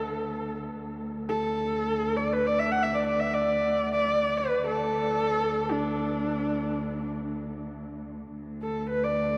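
Vast and proud, this brief excerpt of traditional Mongolian folk music unfolds in free time over about 9.4 seconds. A single horsehead fiddle carries the melody from D4 to F#5 with a rich, husky, focused tone, sliding between notes with vibrato and a smooth top. Beneath it, a muted cello holds a dark, veiled drone on D2, bowed con sordino with a soft attack, and a vast, echoing cathedral reverb surrounds the performance.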